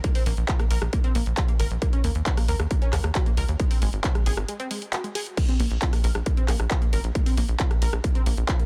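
Emotional and soaring, this uplifting trance excerpt drives along at 135 BPM in Bb minor, cycling through Bbsus2, Ebm7 and Ab7 with a brief break at 4.5 seconds. A distorted, layered kick re-recorded in a large room sits up front beside a tape-warm analog drum machine of crash cymbal, handclaps, hi-hat and rim click, while a punchy sawtooth sequencer bass with a moving notch and sidechain pumping enters at 0.3 seconds. Above them, a detuned, mellow synth arpeggio treated with chorus, phaser, tape echo and sidechain pumping sits further back in a dense, heavily limited modern master with digital ambience.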